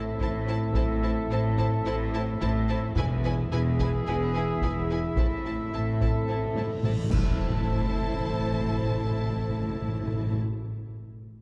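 A rich, bowed double bass section anchors this relentless, epic orchestral film cue, with a cello section doubling the low line in the background. Above them, a lush violin section carries a high melody with vibrato. A second violin line and a distant viola accompaniment add depth, while a close-miked woodwind section holds sustained chords, joined by dark French horns holding chords and mellow trumpets playing stabs. A taiko ensemble struck with heavy sticks drives the cue in a live room, and calf-headed timpani enter at 3.0 seconds as the chords move from Am to E and back to Am. A huge reverse cymbal swells in from 6.9 seconds, and clash cymbals and concert bass drum join at 7.1 seconds. A timpani fill and a drum fill then lead to a full-band accent and an impact at 7.4 seconds, all set in a concert-hall reverb as the moment is cut from a longer piece.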